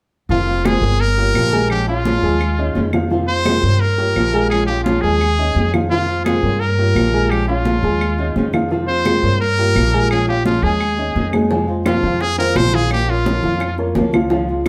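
Riding a straight 4/4 pulse at 171 BPM, this nostalgic Cuban son and guajira excerpt in F minor puts a brilliant, punchy trumpet solo with vibrato and scooped notes up front, over bright, fingerpicked nylon-string guitar, dark, mellow baby grand piano arpeggios with audible action noise and a thumpy gut-string upright bass, while ringing high-tuned congas, woody claves from 0.7 s and round low-tuned bongos arriving at 11.5 s sit in the background of a reverberant studio heard from further back in the room, the repeating Fm7–Gm7b5–Bbm7–Eb7sus4 cycle giving way to Fm and Bbm near the close.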